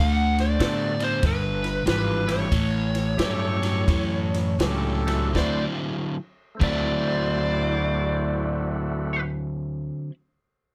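Electric blues shuffle excerpt in D mixolydian, rollicking and gritty, swinging in 4/4 at 78-97 BPM and slowing down over its first 5.3 seconds, where an up-front overdriven semi-hollow guitar riff and a smooth, dark overdriven lead guitar melody with slapback echo ride over woody, thumpy pizzicato upright bass, a dry compact cocktail kit with dark cymbals, a high-tuned snare and a tight kick that stops at 6.8 seconds, tight mellow horn stabs with light vibrato and slapback echo, and a thick, percussive tonewheel organ through a slow rotary speaker in the background, all in light reverb as the chords move from D7 through G7 and A7 to D9 at 5.3 seconds.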